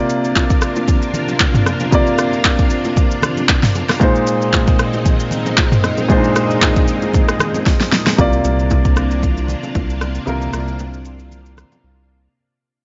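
A mix with gentle reverb and a top end that stays dark opens this hypnotic, soulful amapiano piece, cut from a longer work, moving at 115 BPM in 4/4 with a lightly swung sixteenth feel in C minor. A smooth, vintage grand piano carries the accompaniment up front, voicing C9sus4 before shifting to Bb9sus4 at 4.0 seconds, while a lush string machine spreads sustained sawtooth chords with a slow attack, sub-octave weight and ensemble chorus underneath. The electronic, layered drum kit sits forward with a deep kick, fat tape-toned snare, handclaps, rim clicks, shaker and toms, and barely audible bongos and congas add soft-handed acoustic texture from a small room. After a drum fill, the harmony returns to C9sus4 at 8.2 seconds, where a thick, saturated sine sub bass enters on a sustained low C with a fast attack as the music begins to fade out. The drums and hand percussion drop away at 11.8 seconds, leaving piano, strings and bass to close the brief break.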